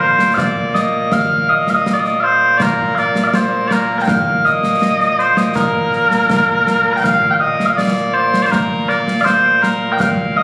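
Captured on a phone in a reverberant, compressed club-like room, this brief excerpt of proud, stirring Scottish pipe music in 2/4 sets mellow small bagpipes up front, their sweet, continuous vibrato tone carrying the melody from a low Bb2 to a high Bb5, over acoustic concert snare and bass drums with dark cymbals and a small-room quality, as the opening strain returns at 7.0 seconds.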